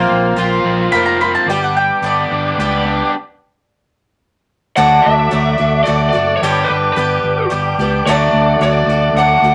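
This excerpt opens with a bright, shimmering twelve-string acoustic guitar picked up front, joined from the start by a punchy fingered electric bass, a soft, flute-like tonewheel organ holding sustained chords through a slow rotary speaker, and a crunchy, double-tracked overdriven guitar riff. It is nostalgic, jangly folk rock and heartland rock in D major, moving at 110 BPM in 3/4 with a straight feel. At 0.9 seconds a round, double-strung mandolin adds a second line, and the overdriven riff and mandolin both stop at 3.1 seconds, leaving a break. At 4.8 seconds a dark lead guitar through a small cranked amp takes the melody, carrying the piece over a shift from G to D. Moderate studio reverb gives the mix a modest sense of room, with the twelve-string's boxy, octave-doubled jangle sitting up front.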